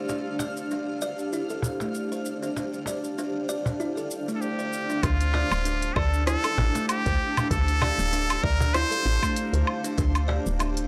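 Earthy and mystical, this organic downtempo excerpt in D minor moves at 97 BPM with a lightly swung 16th feel, opening on a blurred, evolving granular cloud pad and a buzzing, thumbnail-plucked kalimba in tape echo, both under filter sweeps, while a twinkling granular texture shimmers above until 5.0 seconds. An afro-pop drum kit with smooth hats, rim click, shaker and woodblock sits alongside a band-limited, vintage-sounding cajon, and a nasal trumpet with straight mute and vibrato carries the up-front melody from 4.4 seconds. At 5.0 seconds a round, dark FM bass with a woody tone enters with sidechain pumping beside a deep electronic kick, all captured in a dry, gritty hardware recording.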